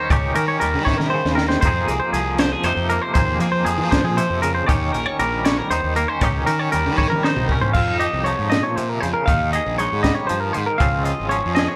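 Two bright, twangy clean electric guitars open this wistful, intricate math rock and midwest emo excerpt in F minor at 78 BPM in a straight 6/8: one carries tremolo-treated accompaniment, while the other, scooped and compressed, picks arpeggios higher up. A fuzzy, overdriven fingered bass sits up front beneath them, and a compact acoustic cocktail kit with a high-tuned snare, punchy kick and dark, rolled-off top adds fills at 0.9 and 7.0 seconds. Played live in one room with light reverb, the band moves through Eb7 and Fm7 before a second section from 7.7 seconds turns toward Eb7sus4 and Dbmaj7.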